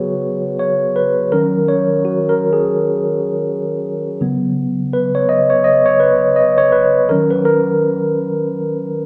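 A mellow tine electric piano opens this short excerpt from a longer reggae piece and carries it alone for the full 9.1 seconds. The tone is clean and sits up front, coloured by the instrument's own built-in speakers, and ranges from Db3 to Eb5. Set in Eb minor at 83 BPM in 4/4, the playing has a relaxed sixteenth-note swing that gives it a smooth, unhurried lilt. The harmony moves between Db7sus4 and Ebm7, lending the passage a bittersweet colour. A moderate reverb from a large studio room surrounds the piano, giving it a sense of space and a live, in-the-room presence.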